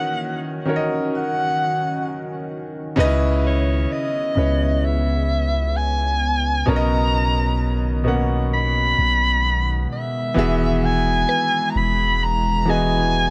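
A slow, straight 4/4 pulse carries this tender, romantic R&B excerpt, led by a mellow soprano saxophone played in a jazz style with vibrato and scooped notes, sounding distant and roomy, over a clear concert grand piano with a natural, deep low end. A moody, full-bodied sawtooth pad with chorus and reverb sits in the background, while a long, sine-toned 808-style bass with a fast attack and decaying tail enters at 3.0 seconds. Near the close, a woody, round mallet-like synth pluck with chorus and digital delay appears briefly at 11.3 seconds.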